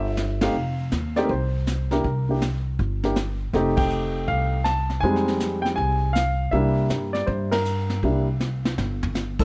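Swinging and warm, this brief jazz piano trio passage moves at a brisk 160 BPM in 4/4 with a firm swing feel. The concert grand carries the melody up front, its deep bass register and short sustain giving the lines a rounded, close presence over changes that move from C through F7, F9 and Fm7 to a closing C9. Beneath it, the upright bass is played pizzicato, its woody steel-string tone sitting forward in the mix. The brush kit joins at 0.2 seconds with a dark, smooth sound and a rolled-off top, a medium-tuned snare and a punchy kick, touching on ride, hi-hat, crash and toms. The trio hits several ensemble accents together, and the drums take a fill from 8.4 to 9.2 seconds just before the cut, all wrapped in a light reverb.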